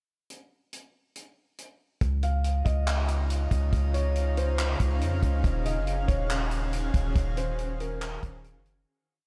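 A vintage drum kit opens with a sparse half-time beat of tight kick, hi-hat and handclaps, soon joined by deep, sliding 808 sub-bass that follows the kick, a felt-muted upright piano looping a soft, intimate melody through tape echo, faint glassy overtones drifting in the background, and a shimmering pad pumping against the beat, all settling into a blissful, floating cloud-rap haze before fading out from 7.2 seconds.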